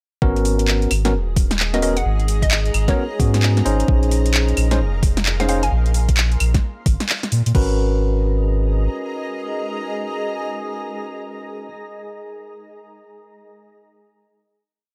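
UK garage in a moody, soulful two-step vein, where an overdriven knocking kick and a skipping garage kit of woody snare, metallic hats, claves, handclaps and crash drive a swung drop over a deep, round dub sub bass, while bright bell-like electric piano stabs with analog delay, a hollow, bouncy square pluck with chorus and delay, and a blurred granular cloud pad share a gritty digital ambience before the drums stop near 7.7 seconds, the bass follows near 8.9 seconds, and the pad and piano hold a final chord.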